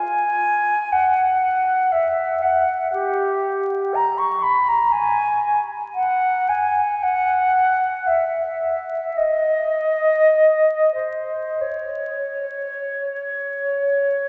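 Yearning and lonely, this brief classical passage is cut from a longer piece and gives a single concert flute the stage for its full 14.3 seconds. The playing is free and expressive, moving in a rubato 4/4 that lets each phrase breathe at its own pace, with the line ranging from G4 up to C#6. The flute's tone is airy and mellow, held straight with soft attacks, and it sits up front yet carries a distant quality. A long, wet church reverb with a 3.6-second decay surrounds every note, while vinyl crackle and a top end that stops at 8.0 kHz lend the sound a dusky, aged cast. Tuned to A4 = 441 Hz, the performance feels like a solitary voice drifting through an empty sanctuary.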